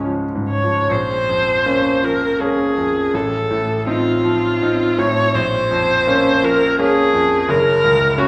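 A viola and a grand piano begin together at 0.0 seconds in this lyrical romantic classical duo, heard as a short passage cut from a longer piece. The music moves in three with uneven beats and flexible rubato. The solo bowed viola carries the melody in its middle register, its rich tone shaded by vibrato and expressive portamento, sitting up front yet with a slightly distant quality. Beneath it, the bright piano accompaniment spans from deep bass notes into the middle range, brilliant and intimate, with long sustain and audible action noise. The harmony settles on a minor chord at 0.9 seconds, moves through F7/A, returns to that minor chord and closes on Gb at 7.5 seconds. A wet recital-hall reverb places the pair in a church or concert hall acoustic.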